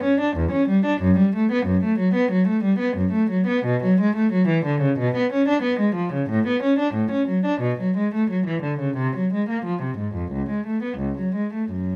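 A freely breathing rubato pulse in four shapes this grave, introspective baroque-style suite movement for unaccompanied cello, heard in a 12-second excerpt from a longer piece. A single bowed cello, placed up front, carries the line alone from 0.0 to 12.0 seconds, ranging from C#2 to D4 with a dark, reedy gut-string tone in period style and a smooth top. Light reverb lends the solo voice a touch of space.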